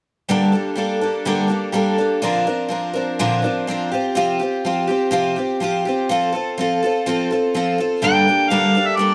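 Rock in G minor at 124 BPM, wistful and reflective, this short cut from a longer piece opens with a picked twelve-string acoustic guitar, shimmering and octave-doubled, carrying the accompaniment up front through Gmadd9, Bbadd9, Csus4 and F. At 8.0 seconds a mellow harmonica enters with a vintage, punchy solo melody, its vibrato and scooped notes set off by a slapback echo, as the chords return to Gmadd9. Light reverb surrounds the short piece.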